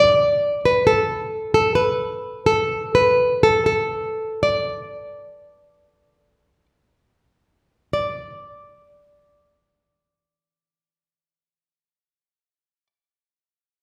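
A solo nylon-string guitar, fingerpicked in a classical manner with a full-bodied, up-front tone, opens this graceful, pastoral Chinese traditional excerpt in a rubato 4/4 (47-69 BPM), slowing through its first 8.0 seconds before moving into a new section that runs to 12.9 seconds, its melody staying between A4 and D5 inside the wet reverb of a recital hall.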